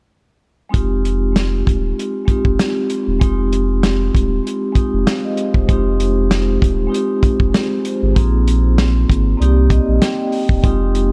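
Soft-mallet vibraphone, mellow and ringing with a slow motor vibrato and colored by cassette tape, filtering and dub echo, floats over a deep, round sine sub bass and a dry, dark soul drum kit with a tight kick and rolled-off top in this gritty, moody boom-bap hip-hop fragment with a lightly swung 4/4 feel, moving from Fm9 through Bb9sus4 to Cm9 as the vibraphone slips in a short fill at 9.4 seconds.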